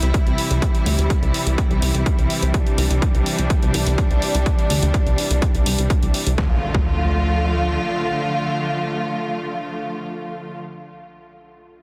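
A straight pulse drives this cinematic, dramatic melodic techno fragment, built on a heavy, layered electronic kick sitting up front and an overdriven electronic hi-hat, both in a small room ambience. A punchy, funky analog bass with a wave-folded, filter-plucked tone pumps under sidechain until 7.8 s, while a lush, bowed studio string ensemble with vibrato holds sustained chords that also breathe with the pumping throughout. At 6.4 s the hi-hat falls away, the harmony moves from C to D minor, and a distant electronic impact sounds beneath the strings, all within a dense, heavily limited, dry modern mix.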